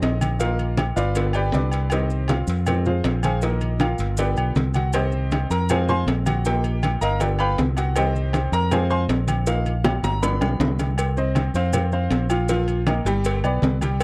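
A bright, woody upright piano sits up front and carries a solo from the opening until 11.0 seconds, its brilliant, open tone riding over a fiery, driving salsa groove in a straight four. Beneath it, a round, warm fingered electric bass sounds direct and amped, also sitting up front, while the harmony cycles through Bbsus4, G7, Cm and Fm. Low-tuned congas with a thick, damped skin and soft hands sit in the background, joined by tight, high-tuned cowbell and bongos struck with hard hands in a live room. Ringing metal-shelled timbales and agogo bells are miked close, and grainy, mellow maracas add a dry, understated shimmer far back in the mix. A drum fill at 9.9 seconds leads into a new section, in this dry, close recording with a 1970s-style studio character, cut from a longer piece.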